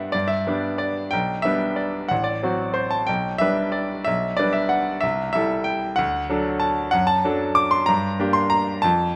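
A classical piano waltz in G major at 187 BPM, played with rubato and carrying a wistful, nostalgic mood across this short excerpt of about 9.2 seconds. A bright grand piano plays solo from A1 to D6, its brilliant, polished tone sitting up front with short sustain, captured by close, detailed microphones in a moderate scoring-stage reverb. The harmony moves from G through G/B, F#dim/A, Am7/C and D before turning to G minor at 7.9 seconds.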